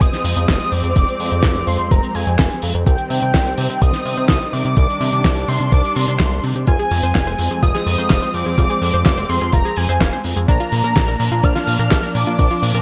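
A thick, detuned unison lead carries the melody through digital delay over veiled, muted string chords, a glossy, nasal chorused synth bass, a thumpy electronic kick and a dry 70s kit of fat snare, hi-hat and handclaps with gated reverb, in a melodramatic, bittersweet F dorian italo disco excerpt at 126 BPM, where a round analog pluck enters at 6.7 s with chorus, cassette tape colour and digital delay on its arpeggios as the chords move through Fm, Cm and Bb.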